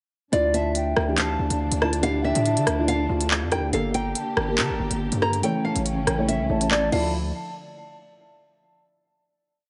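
A close, lightly reverberant small-room mix with softened top end frames this menacing, cold drill track at 141 BPM in a half-time feel, set in D harmonic minor. A fingerpicked nylon-string guitar loop with tape echo carries the melody over muted felt-piano chords with audible action noise, a distant bowed string pad, and an airy, hollow flute counter-melody that also trails tape echo, entering at 0.5 seconds. Up front, crisp skipping hi-hats with fast rolls, handclaps, rim clicks and crash cymbal drive the drill beat while a saturated, distorted 808 bass slides between long sub-bass notes, the chords moving from Dmadd9 through Gmadd9 and A before a final hit at 7.1 seconds.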